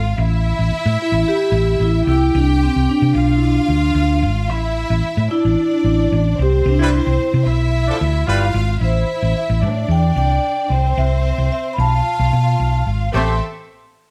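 A straight 4/4 disco groove at 111 BPM in A minor sets a sultry, glamorous mood in this short cut from a longer piece, anchored by a round, punchy hollow-body electric bass sitting up front while a lush, bowed string section holds a clear second line. From 1.0 s a mellow, ringing vibraphone played with soft mallets carries the melody in a dry, close-miked sound. A distant, roomy horn section adds brief stabs with slapback echo during a band accent around 6.8 s, before the harmony moves through Am7, C and G#m6 under light reverb.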